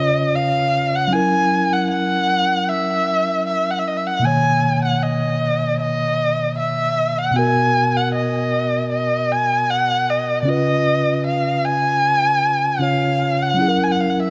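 A dark, bowed erhu carries the melody up front, its soft attack, expressive vibrato and portamento giving each phrase a smooth, singing top as it moves between D5 and G#5. Beneath it, a mellow tine electric piano sits close and clean, playing accompaniment from B2 to C#5 for the full 14.3 seconds. This is a slow R&B piece at 77 BPM in 4/4, with a gentle swing on the sixteenths and tuning set to A4 = 439 Hz. The harmony drifts from C#7 and F#7 into long stretches of Bmaj9 and Bmaj7 before returning to C#7 and F#7 near the close, a late-night mood full of longing. Light reverb and a small room ambience frame a warm production cut from a longer piece.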